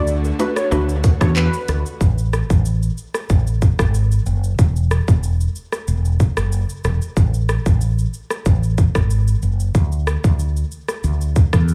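A smooth, velvety synth lead and a woody, warbling mallet-like pluck open this bouncy, summery dancehall excerpt together, both colored by chorus and tape echo, while lush bowed strings pump behind them on sustained chords. A mellow fretless electric bass, dark and round, sits up front from the start, and an electronic island pop kit joins at 0.1 s with a tight kick, warm hats, handclaps, rim clicks and shaker. Faint, high-tuned bongos sound distant in a large room before dropping out at 1.8 s, when the lead also falls away. From 2.0 s the strings are gone too, leaving bass and drums to carry a sparse, straight groove over a rootless F#madd9 that alternates with bare stretches. The whole mix is soaked in echo and digital studio ambience.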